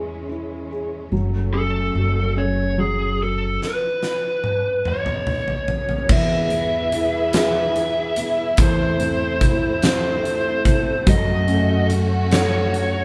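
Up front, a lo-fi, overdriven lead guitar carries the melody from 1.5 seconds, its picked tone warm from a small cranked amp, in this tender, heartfelt six-eight pop ballad in E major, moving slowly at 48 BPM in dotted quarters. Beneath it, a felt-muted upright piano plays mellow, intimate accompaniment with audible action noise, while a distant, lush string section holds bowed chords with vibrato and portamento. A woody, growly upright bass, plucked pizzicato, anchors the low end throughout. A huge arena drum kit arrives at 3.6 seconds with a fill, bringing a punchy kick, fat snare, toms and bright cymbals, and at 6.1 seconds a dark, full-bodied jumbo acoustic guitar joins in the background with fingerpicked arpeggios as the harmony moves through E, Am/E and F#m. The band sounds as if playing live in one room, wrapped in moderate large studio reverb, and the piece is cut from a longer work.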